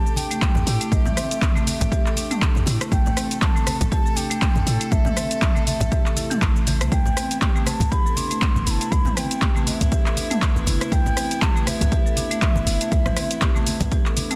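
Afro house at 120 BPM in A minor with an earthy, warm mood, this excerpt sets an airy bamboo bansuri melody, with vibrato, chiff and delay, over hard-mallet marimba arpeggios and distant, floating bowed chamber strings, both pumping with the sidechain, while a punchy, overdriven electronic kick sits up front beside a deep, boomy 808-style bass, a layered deep house kit of handclaps, hi-hat, rim click, shaker and toms, and close, dry congas in the background, as the harmony moves from Am7 to Cmaj7 at 6.9 seconds.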